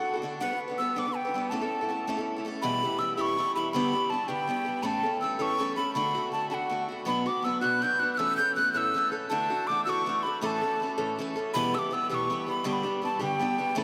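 A breathy, mellow metal whistle carries the melody up front with expressive vibrato and a soft attack, in a cheerful, lively Celtic folk tune in a straight 6/8. Close beside it, a picked acoustic archtop guitar gives boxy accompaniment through chords such as G, A, Em and D. A huge, wet ambient reverb places the pair in a vast, echoing space in this short cut from a longer piece.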